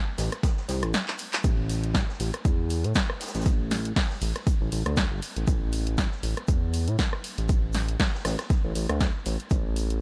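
Deep house at 119 BPM in A minor, with a gentle 16th-note swing and a deep, smooth mood, taken from a longer piece. An up-front electronic kick anchors a layered, produced drum kit of handclaps, hi-hat, rim click and a punchy snare, while a mellow sawtooth-and-square synth bass with detuned vibrato and sidechain pumping sustains beneath, and an acoustic jazz kit of hi-hat, shaker and medium-tuned snare sits quietly in the background with high-pass filtering. A brief drum fill arrives at 1.1 seconds, and the dry mix carries little reverb.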